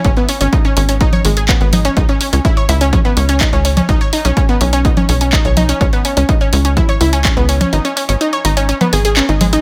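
Melodic techno with a driving, dramatic mood, built on a tight, sawtooth-edged sequencer bass and an up-front, layered electronic kick that drops out at 7.7 seconds. A tape-warm analog drum machine supplies congas, handclaps and hi-hat, while a lush, warbling unison pluck spins arpeggios through tape echo over a G#sus4 to C#m to Badd9 to C#m7 progression. Sidechain pumping breathes through the bass, the pluck and the drum machine's hats and percussion, all set in a digital ambience.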